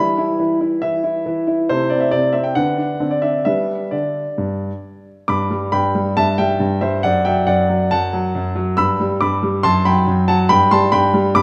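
A classical-period piano sonatina in G major, this short, playful excerpt moves at 138 BPM in 4/4 with a cheerful, rubato feel and tuning set at A4 = 439 Hz. A solo grand piano carries the whole 11.4 seconds, ranging from F#2 to E6, its tone warm, smooth and vintage, with short sustain and an up-front presence. The opening passage runs to 5.3 seconds, moving from E minor through A minor over C and a D suspended colour before settling on G at 3.5 seconds. A second passage follows, passing through A minor seventh over G, D over F sharp and a richer A minor thirteenth over F sharp, resolving to G at 10.5 seconds. A wet recital hall reverb with a 1.5-second decay surrounds the instrument, lending the cut-off fragment an airy concert-room glow.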